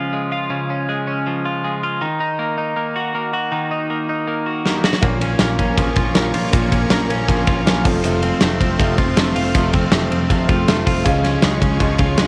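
A straight 4/4 pulse at 159 BPM drives this restless, bittersweet jangly indie pop fragment in Bb minor, cut from a longer piece. A bright, twangy twelve-string electric guitar opens alone with clean, compressed arpeggios sitting up front. A big rock drum kit comes in with a fill at 4.7 seconds, with a punchy kick, a medium-tuned snare, hi-hat and ride, and a rolled-off top. At 5.0 seconds the rest of the band joins: a dark, round picked electric bass, a full-bodied fingerpicked jumbo acoustic guitar with fresh strings further back, a very quiet, woody upright piano with audible action noise and long sustain, and a lush sawtooth string machine holding slow-attack chords with a sub octave and ensemble chorus. The harmony moves from Db and Ebm to Bbm and F before returning to Db, all in a small room with light reverb.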